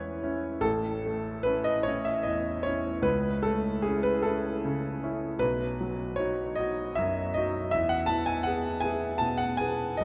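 A smooth, vintage-toned concert grand piano with deep bass sits up front and alone across A1 to A5 in this yearning, wistful romantic nocturne excerpt, moving in a rubato 6/8 at about 50 BPM in dotted quarters through C#m/E, A, A/C# and B to E, all bathed in a cathedral reverb with a 5.3 s decay that fills a vast, echoing space.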